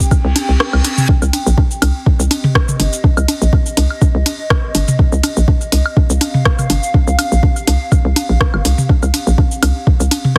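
Heavily compressed and squeezed like a radio broadcast, this short cut from a longer minimal techno track has a sparse, clinical mood set in a digital ambience. A soft, tape-warm electronic kick sits up front with a hollow, bouncy FM bass whose punchy, fast-attack notes knock and decay mellowly in a low register, pumping against the kick. Around them, a clicky kit of hi-hat, ride cymbal, rim click and shaker, re-recorded in a large room, carries a light swing, while dry analog-style electronic bongos, woodblock and toms add extra percussion from 0.1 seconds. Underneath, a dark, lo-fi pad built from square and triangle tones warbles with a nostalgic haze, swelling in slowly through chorus and its own reverb while also pumping to the kick. A reverse cymbal sweeps in at 0.2 seconds, and the kick drops out briefly from 0.6 until 1.1 seconds, while the whole groove rests on a single C minor chord throughout.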